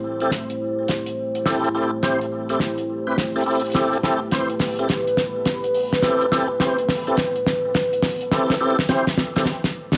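A damped 70s drum kit sits up front with a fat, dry snare and hi-hat under a rolled-off top, driving a funky, swaggering glitch hop groove at 105 BPM in A minor with a 64% swing on the sixteenths, the whole stretch built as a drum fill and build-up over a single Am7 chord. A tonewheel organ adds full, clean stabs from 0.2 to 9.5 seconds, colored by chorus vibrato, a slow rotary speaker, 12-bit sampler grit and analog delay, while a dark analog pad holds deep, detuned sawtooth chords with a sub octave, slow attack, chorus and phaser. Cassette tape, a short wet studio reverb and a faint mains hum give this excerpt the feel of a home recording.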